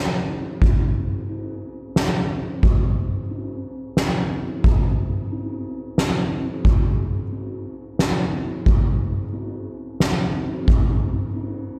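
Set in a straight 3/4 at 90 BPM, this short rock cut moves at an unhurried, deliberate pace, and it is lifted from a longer piece. The only part is an acoustic drum kit played with soft mallets on both drums and cymbals, entering at 0.3 seconds and sounding until 11.5 seconds. Its kick is boomy, its snare fat, and the ride cymbal completes the kit. The kit sits up front in a big room, touched by light reverb that gives it a spacious, cinematic depth. The mood is melancholic, like a slow procession waiting for a melody to arrive.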